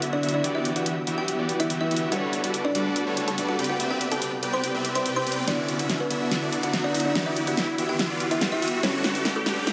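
Bright and playful, this future bass build-up moves at 143 BPM in 4/4 with a half-time feel, tuned to A4 = 436 Hz and cut from a longer piece. A buzzing kalimba carries the melody with woody, thumbnail-plucked notes that ring short and sit forward in the mix, touched with delay. Huge, lush supersaw chords play the riff up front through a low-pass filter that sweeps across the whole passage, while a shimmering, ethereal pad holds sustained chords in the background with chorus, phaser and its own reverb, its filter also sweeping throughout. A deep, boomy 808-style bass sits very quietly beneath, and a big-room electronic kit drives hi-hat and a huge snare, breaking into a fill from 5.5 seconds. A background riser enters at 2.7 seconds as the harmony cycles through Em7, Gmaj9#11, Cmaj7 and D69, and a moderate shimmer reverb with a high-pass filter glazes the mix.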